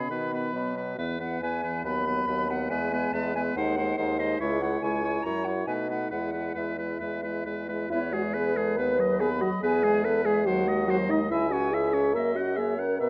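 Lively and cheerful, this quick classical-period movement for wind quintet moves with a rubato feel, and its opening phrase returns at 7.9 seconds in this fragment cut from a longer piece. A pure, distant silver concert flute carries the melody with vibrato and tongued notes above a clear oboe second line, while a roomy French horn and a dark, soft-attack clarinet fill in the accompaniment. An up-front bassoon anchors the bass, and the quintet sits in a moderate recital hall reverb.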